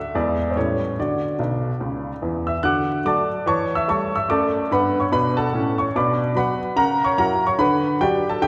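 Swung eighth notes drive this playful, exuberant stride jazz fragment in 4/4, cut from a longer piece and carried by a solo upright piano from start to finish. The piano sounds woody and intimate, sitting up front with long sustain and audible action noise, and a brief fill from 1.4 to 2.6 seconds leads into a second pass of the strain, which moves from A7/E through Bm and F#7/C# before settling on Bm/D. A wet concert hall reverb surrounds the instrument, giving the clear, polished playing a spacious, resonant air.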